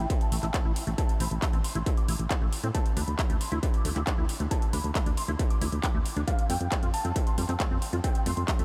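A driving, straight 4/4 pulse at 136 BPM anchors this emotional, bittersweet uplifting trance excerpt, where a distorted, up-front electronic kick and a techno kit of handclaps and metallic hi-hats enter at 0.1 seconds alongside a round, punchy FM bass, squelchy resonant acid-bass arpeggios with chorus and tape echo, and a detuned unison supersaw stab melody with a plucky low-pass filter and echo, the synths breathing with sidechain pumping in light reverb until an Fadd9 chord arrives at 6.3 seconds.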